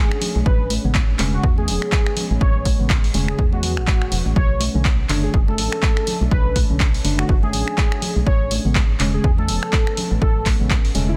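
A velvety synth lead opens this moody, smooth deep house excerpt, its detuned tone carrying vibrato, chorus, delay and a gritty vintage sampler edge, while a deep, dark pad with slow attack, chorus and reverb settles in the background, pumping against the beat. A punchy analog drum machine brings finger snaps, handclaps, hi-hat and a softly clipped snare, with band-limited acoustic congas tucked behind, a hollow, organ-like FM bass from 0.4 s, and an up-front electronic kick from 0.5 s. From 0.8 s a mellow, clean tine electric piano adds tape-echoed stabs over chords that move from Amaj9 to Bm9 and back, all within a dense, heavily limited, dry mix.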